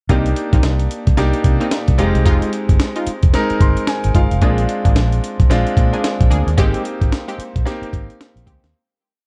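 New jack swing R&B with a bouncy, slick feel, driven by a gritty, up-front breakbeat sampler-style drum kit with a thumpy kick, a round, foam-muted fingered electric bass playing a swung line with ghost notes, a clear concert grand piano pushing rootless chords and adding a short fill at 3.3 seconds, and a punchy, detuned sawtooth polysynth firing short syncopated stabs through chorus and digital delay, set in a dark digital ambience before the piece fades out from 6.6 seconds.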